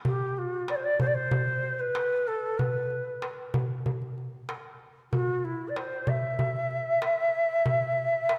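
A dark, warm production bathes this brief passage in the long, wet reverb of a concert hall, which rings for 1.9 seconds. It is a hypnotic, soulful piece of Arabic maqam ensemble music in E maqam bayati, moving at 95 BPM in a straight 4/4. A breathy ney carries the melody between E4 and E5, its end-blown reed-cane tone shaded with vibrato and tongued notes, sitting up front while keeping a distant, warm quality. A darbuka with a metal shell supplies the percussion, its crisp acoustic hits struck with hard hands and given a compressed, saturated edge close in the mix. Both instruments play together from 0.1 seconds to the end at 8.4 seconds, and the passage is cut from a longer piece.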